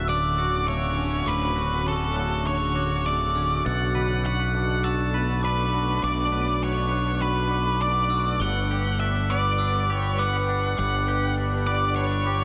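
A dark, fuzz-drenched lead guitar carries the melody up front in this hopeful, cinematic rock excerpt at 101 BPM, its distorted line trailed by delay. A punchy, overdriven fingered bass growls beneath, while a twangy, scooped clean guitar with analog chorus and a bell-like glockenspiel struck with soft plastic mallets spin delayed arpeggios over the Dmaj7, Bm7 and Gmaj7 changes. A shimmering, ethereal pad with a warbling, detuned quality holds sustained chords, and a dreamy plate reverb soaks the whole mix.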